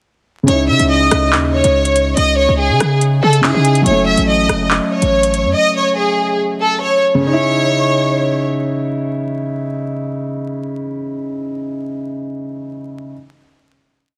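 A rich, lush violin section carries the looping melody up front, bowed with focused vibrato and repeated like a sampled loop, in this tense, dark drill track in C# minor at 142 BPM with a half-time feel. Underneath, a dark, mellow baby grand piano holds long-sustained chords in a spread voicing, moving from C#madd9 to F#m7 and back, and it keeps ringing until 13.1 s. A hard-hitting 808-style bass drives the low end with punchy, heavy sub-bass notes that slide in pitch. An electronic drill kit with metallic, skipping hi-hats, handclaps and rim clicks, re-recorded in a small room, joins the bass from 0.5 s until both drop out around 5.5 s. After the hook, a final chord begins at 7.2 s, and the violins fall silent at 8.5 s. The sound is dense and heavily limited, with light reverb, small-room ambience and a layer of vinyl crackle.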